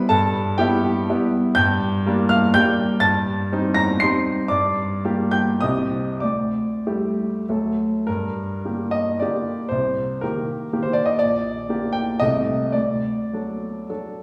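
Classical romantic triple-time dance in G minor for solo grand piano, capricious and nostalgic, moving with free rubato between 93 and 130 BPM and driven by dotted rhythms in 3/4. The piano sounds clear, intimate and natural, placed up front with audible action noise, while a wet recital hall reverb surrounds it. This excerpt from a longer piece turns toward new material at 8.1 seconds, passing through Cm7 and a diminished chord before landing on D.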